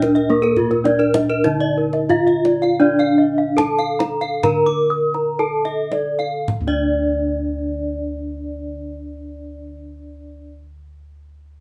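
In a straight 4/4 pulse that slows down from 0.3 to 6.5 seconds, this hypnotic Balinese gamelan passage, cut from a longer piece, sets an up-front, dry bronze metallophone melody struck with a wooden mallet over round, beating bossed gongs in the bass and deep, hard-handed kendang that stops at 7.0 seconds. Two more metallophones play arpeggios, one mid-forward and the other a bright horn-mallet part, and the paired tuning of all three metallophones gives ringing, shimmering beats. The group plays live in one room within a wet studio ambience, moving into a new section at 6.5 seconds.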